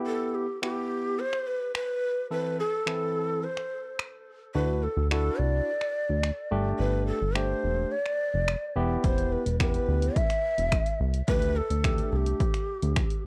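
Carefree and upbeat, this dance-pop excerpt moves at 107 BPM in a straight 4/4, with a breathy, hollow shakuhachi carrying the melody through delay and plate reverb over a bright, barky tine electric piano that pumps with sidechain from the start. A punchy analog drum machine enters at 0.6 seconds with kick, hi-hat and finger snaps, and a fat, detuned sawtooth bass joins at 4.5 seconds, also pumping, as the chords cycle from Em through Am/E, Dadd9 and Gsus2, back to Em and on to Dsus4. The whole mix sits in light reverb and carries the worn, warbling pitch drift of old cassette tape.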